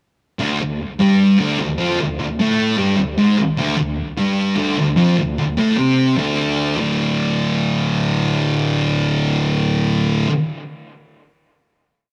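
Raw and swaggering, this short rock piece sets a thick, double-tracked fuzz guitar up front alone, picking a distorted octave riff through tape echo and a wet small-room reverb before landing on a final chord held from 6.8 seconds, all in a rough rehearsal-room sound.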